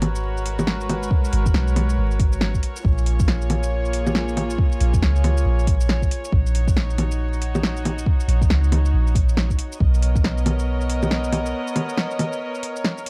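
A soft, round 808-style bass sits up front with a deep, sine-like tone, pumping under the sidechain and dropping out at 11.5 seconds as a brief break opens. Around it, a distant chamber string section holds reedy, gut-toned chords with light vibrato, while an up-front, tape-warm deep house kit of bongos, shaker, metallic hats and a fat snare swings alongside, joined by a deep electronic kick from 1.1 to 10.2 seconds. This melancholic, nocturnal future garage excerpt has dark, warm production, close and dry, with a layer of vinyl crackle.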